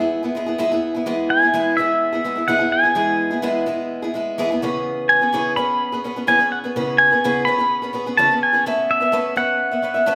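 A picked, woody acoustic guitar with a boxy, old-string tone opens this nostalgic, open-road rock excerpt, picking through E, C#m7 and Aadd9 in a straight four. At 1.3 seconds a bright, twangy pedal steel enters up front with the melody, its clean, compressed slide lines shaped by fingerpicks and volume swells. A moderate hall reverb gives both instruments a spacious, church-like glow.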